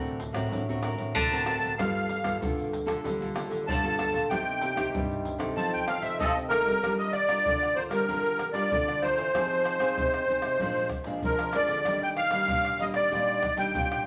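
Bathed in a wet, large studio reverb, this nostalgic, yearning samba and choro fragment at 95 BPM in 4/4 sets a reedy, shimmering musette accordion up front on the melody from 1.2 s, soloing through the opening section, over a bright, full-bodied fingerpicked nylon-string guitar with audible finger squeak, a warm thumb-plucked nylon-string guitar bass, and close, soft-handed maracas, pandeiro, tight surdo and tamborim, settling into G minor at 6.8 s.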